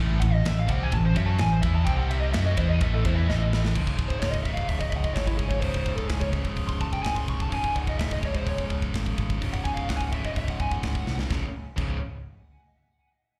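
At a straight 127 BPM in 4/4, this relentless, epic heavy metal excerpt in C# harmonic minor drives a tight metal drum kit with bright cymbals and a tight kick under an overdriven, growly picked bass and a double-tracked, high-gain distorted guitar riff. A second heavy high-gain guitar sits in the background until 3.7 seconds, while a dark, smooth lead guitar with overdrive, slapback echo and delay solos from 0.2 to 11.2 seconds over power chords on A, C and C#. Drum fills mark 3.3 and 11.1 seconds, and the whole is heard as a live gig through a club PA.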